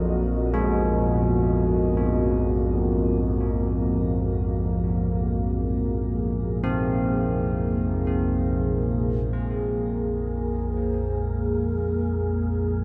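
A detuned, warbling analog drone sits up front in the low register, its sawtooth and pulse-wave tones softened by chorus into a mellow, vintage hum that anchors this desolate, cavernous dark ambient excerpt. Above it, a deep, moody pad holds sustained chords with slow attacks and long releases, its unison layers thickened by chorus and blurred by built-in and shimmer reverb. From 0.5 seconds, close-miked carillon bells ring out dry, bronze arpeggios, their bright, worn-iron character cutting through the murk. At 9.3 seconds, the harmony shifts and a breathy, hollow shakuhachi enters in the background with a straight-toned melody trailed by delay. An airy, wind-like noise texture joins at 10.2 seconds, drifting faintly beneath a cathedral-sized reverb that gives the whole production its dark, shadowy depth.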